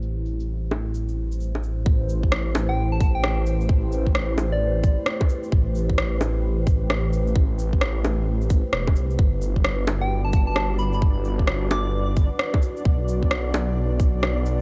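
Nocturnal and melancholic, this excerpt of future garage moves at 131 BPM in A dorian with a swung sixteenth-note feel, opening with a filter sweep over the shaker, bongos and rim click before a tight, up-front electronic kick enters at 1.9 seconds. A menacing, saturated detuned saw bass and a dark, moody analog pad, treated with chorus and phaser, both pump against the sidechain beneath chords moving from Am7 to Em7/G and Bm. A round, keys-like FM lead with chorus and digital delay plays brief melodic phrases, and from 10.0 seconds a grainy, flickering texture shimmers in the background, all within a dry, low-pass filtered mix.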